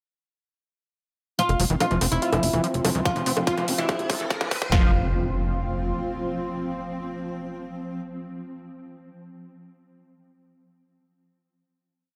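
Psychedelic trance with a psychedelic, alien mood, this short whole piece opens at 1.4 seconds with a bright, woody, plectrum-plucked oud playing a repeating riff melody through phaser and dub echo, while a squelchy, screaming distorted acid line with chorus runs a 12-step loop that drifts against the bar under a filter sweep. A tight, rolling sequencer bass drives in sixteenth notes as electronic hi-hats and bongos, overdriven and bright, carry programmed hats and a backbeat. An airy, breathy pad with chorus drifts through slowly shifting chords high above, and a swarming, nasal drone enters at 2.2 seconds, tense and evolving in its built-in reverb. The punchy, tape-warm big-room kit joins with a four-on-the-floor kick and snare for a drum fill that caps the build-up at 4.7 seconds, with background riser and impact effects marking the transition. From there the piece settles onto a final chord held by the oud, drone and pad, with sidechain pumping on the oud, drone, acid line and pad and light digital ambience over the whole mix.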